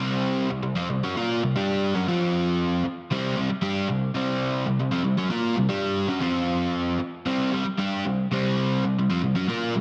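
A crunchy, overdriven electric guitar plays alone from the start, picked and double-tracked up front with a touch of spring reverb. It moves between C5 and F5 chords in a straight 4/4 rock feel, and the mood is dark and cathartic. This 9.8-second excerpt from a longer piece sits in a light room with a dense, heavily limited modern master.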